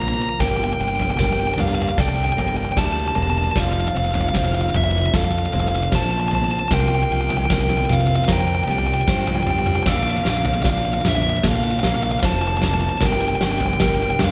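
A steady, straight 4/4 pulse at 76 BPM drives this euphoric, soaring post-rock excerpt in F major, which builds across its full 14.3 seconds under one continuous drum fill from a huge arena kit, with a fat snare, punchy kick, crash cymbal and toms sitting up front with a rolled-off top. The melody comes from a nasal, overdriven lead guitar with a parked wah, picked high between E5 and Bb5 and placed at the front of the mix. Beneath it, a fuzz-drenched fingered electric bass growls low, while a clean, direct-recorded electric guitar and a soft, felt-muted upright piano spin arpeggios in the background. A twangy pedal steel, played with fingerpicks and slide, adds very quiet sustained chords with volume swells. The harmony moves through Gmadd9, F, C7sus4 and Bbmaj7 before returning to Gmadd9, all captured as a band playing live in one room with a wet studio reverb.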